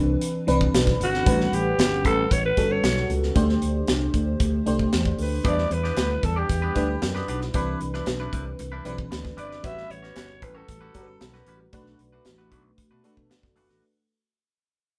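Over a straight 4/4 groove from a punchy, up-front studio drum kit and a growly fingered electric bass, this nocturnal, slick jazz-funk pop fragment sets a lush, chorused FM electric piano with a dreamy pad beneath a raspy, breathy alto saxophone solo that runs from 1.0 to 11.5 seconds, while a bright, twangy clean electric guitar riff enters at 5.4 seconds, all within a moderate studio reverb and a fade-out spanning the whole piece.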